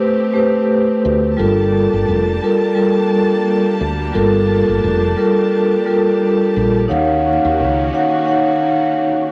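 Reflective yet tough, this hip hop excerpt swings gently on the 16ths as a mellow, ringing vibraphone with soft mallets and a slow motor vibrato accompanies up front, its tone colored by cassette tape, while a lush, bowed studio string section sustains smooth chords beneath it. A growly, round fretless electric bass with a hollow-body woodiness and an ensemble chorus enters at 1.0 seconds and drops out at 7.9 seconds. The whole has a homemade cassette character, with vinyl crackle, small room ambience and a moderate spring reverb, as the harmony moves from Am9 to Gm9 and then to Ebm9.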